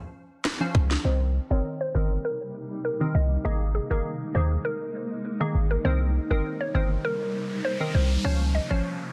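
A dense, heavily limited modern master with little reverb and a trace of lossy compression artefacts frames this hypnotic, tough dancehall passage in C phrygian at 100 BPM, cut from a longer piece. An electronic island pop drum kit with a tight kick, sharp snare, finger snaps, rim click and hi-hat carries vintage 12-bit sampler grit and sounds as if re-recorded in a large room, but it plays only briefly near the start. A deep, boomy 808-style bass sits up front beneath a glassy, crystalline wavetable pluck that warbles through chorus, ring modulation and a filter sweep. At 1.0 seconds a woody, round mallet-like synth pluck takes the melody with chorus and tape echo, and at 2.2 seconds a cloudy, evolving granular pad with slow attack, built-in reverb and sidechain pumping blurs the Cm7 and Absus2 harmony. An electronic noise sweep joins at 6.5 seconds, and the chords return to Dbmaj7 at 8.2 seconds.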